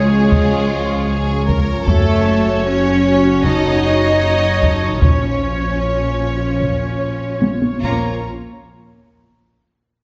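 Heavy-stick taiko drums drive this dark, relentless excerpt of epic orchestral film score at 76 BPM in Bb minor, entering at 0.3 s, breaking into a fill at 7.4 s and playing alone after the orchestra stops around 8.3 s. A focused, distant violin section carries the melody with vibrato alongside a very quiet, pure flute ensemble, while a lush second violin line, an expressive viola section with portamento, smooth cellos and up-front double basses fill out the strings. Punchy French horns and roomy trombones hold sustained chords, and soft-attack trumpets add stabs over a Db to Gb minor to Bb minor progression, set in a moderate scoring-stage reverb.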